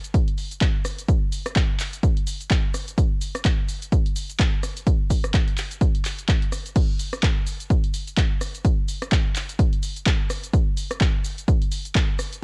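Dry and tape-warm, this home cassette recording of an energetic, soulful house groove at 127 BPM in 4/4 with a 58% swing on the sixteenths pairs an up-front, punchy electronic kick from 0.1 to 12.1 seconds with an analog drum machine playing crash cymbal, handclaps, hi-hat, rim click and shaker, repeating the same section twice as a drop in this short cut from a longer piece.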